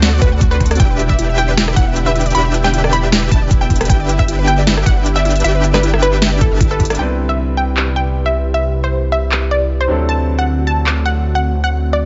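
Light reverb and a digital ambience give this bright, euphoric future bass cut a polished, close sound, and it opens mid-drop at 155 BPM in a half-time 4/4 with a gentle swing on the 16ths. A punchy, detuned unison pluck carries the melody through a digital delay. A second pluck, ring-modulated, wave-folded and tucked in the background, plays arpeggios with a cassette-tape tint. Huge, lush supersaw chords drive a filtered riff, while an airy, breathy pad with chorus holds sustained chords underneath. A deep, saturated sub bass and an up-front, knocking electronic kick sit beneath an overdriven trap kit of sharp snare, crisp hats, handclaps and rim clicks, and most of the parts pump against the sidechain. After a band accent at 6.9 seconds, the supersaws, arpeggios and kick drop out, a clear baby grand piano enters at 7.0 seconds over Cmaj7 and D7 harmony, and the trap kit stops at 10.9 seconds.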